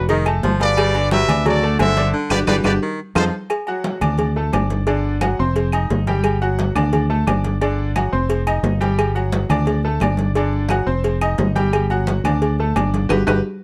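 Salsa at 175 BPM in G major, this sunny, danceable passage is cut from a longer piece. A clear, tight trumpet section carries the melody up front with light vibrato, joined by a forceful baritone saxophone on a second line, both dropping out after about 3.3 seconds as the band hits accents before the second section begins at 3.5 seconds. Throughout, a bright, brilliant concert grand with a worn edge and deep bass carries the harmony, cycling through D, G and F chords in the second section over a dark, round, punchy fingered electric bass that sits up front. Ringing congas, a tight high-tuned cowbell, woody claves and metal-shelled agogo bells and timbales fill out the percussion, the congas, cowbell and claves sitting in the background. Another band accent lands on a Gmaj7 near the close, with a drum fill at 13.4 seconds. The sound is close and detailed, with light reverb.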